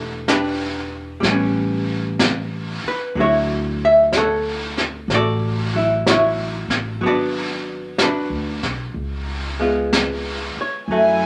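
A moderate club reverb gives this short cut from a longer piece a smoky air, with the clean, dark tone of a picked hollow-body archtop guitar sitting up front. It is a wistful jazz ballad at a slow 62 BPM in 4/4 with a swung eighth-note feel, the guitar carrying the accompaniment through chords that move from Em7 and A9 to a lingering Dmaj9, then G#m7b5 and C#7. Underneath, a woody pizzicato upright bass with steel strings holds the low end, while a vintage brush kit enters at 0.3 seconds: brushed snare and hi-hat with a high-tuned snare, a roomy small-room character and a rolled-off top. Just before the close, at 10.9 seconds, a lush symphonic string section arrives up front with bowed, expressive sustained chords, soft attacks and rich vibrato, adding a warm ensemble glow at the very end.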